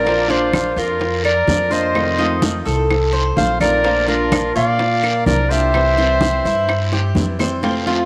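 Latin Cuban son in the guajira style, relaxed and easygoing at 127 BPM in 4/4, moving through Bb, F7, Bb and C in this short cut from a longer piece. A close-miked clarinet carries the classical-style melody while a brilliant, punchy trumpet with light vibrato plays a quieter second line, both stopping at 7.2 s. Beneath them sit fingerpicked flamenco guitar, bright metallic tres arpeggios on double strings, and a dark, thumpy pizzicato upright bass on gut strings, while ringing congas, very quiet round low-tuned bongos, raspy guiro and woody, dry background claves fill out the percussion, with a drum fill at 6.9 s and a moderate plate reverb over the whole.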